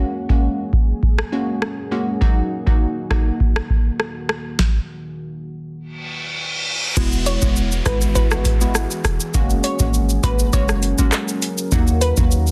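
A booming analog drum machine drives a straight 4/4 dancehall groove at 101 BPM, its deep kick, tonal soft-clipped snare, metallic hats, claps, rim clicks, shaker and crash sitting dry and up front under a deep, dark, chorused pad and a crystalline, detuned wavetable pluck, both pumping to the sidechain over F#add9 and D#m. The groove breaks off at 4.6 seconds, and the reverse cymbal and downlifter effects enter at 5.9 seconds, the cymbal swelling into 7.0 seconds, where a boomy sine-based 808-style bass arrives on Eadd9 and a second glassy pluck adds a chorused melody with digital delay. The hypnotic, tough mood is sealed by a dense, heavily limited modern master with digital ambience.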